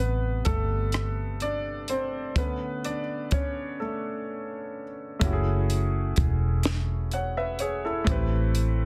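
A slow six-eight R&B groove at 42 BPM in F# minor sets a sultry, late-night mood in this short excerpt, with a compact cocktail drum kit entering at 0.4 seconds on hi-hat, kick, rim click and a high-tuned snare carrying a touch of soft clipping, alongside a dark, foam-muted vintage electric bass that sits round and punchy up front. A concert grand piano with audible action noise and deep bass supplies the accompaniment through plate reverb, taking a solo spot from the start with a break at 3.8 seconds before the second section arrives at 5.2 seconds on an F#m9 chord. The dry, dense, heavily limited master keeps every part close and intimate.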